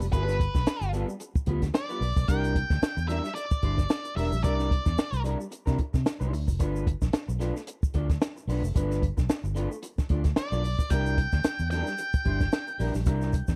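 Funk in G mixolydian at 111 BPM, this energetic excerpt rides a swung sixteenth-note feel in 4/4 as the harmony moves between G9 and C9. A compact cocktail drum kit sits up front with a punchy kick, high-tuned snare and hi-hat, its sound dark and smooth in a small room, while a vintage muted fingered electric bass adds a round, foam-muted thump from E1 to C3. An electric guitar through a small old amp supplies bright, twangy, slightly broken-up accompaniment with a subtle chorus, and a grainy tube shaker ticks mellowly in the background. The octave-fuzz lead guitar carries the melody between B4 and G5 with a distorted, dark tone and slapback echo, dropping out after 5.2 seconds and returning at 10.4 seconds. The whole track has the dry, close feel of a 1970s-style studio recording.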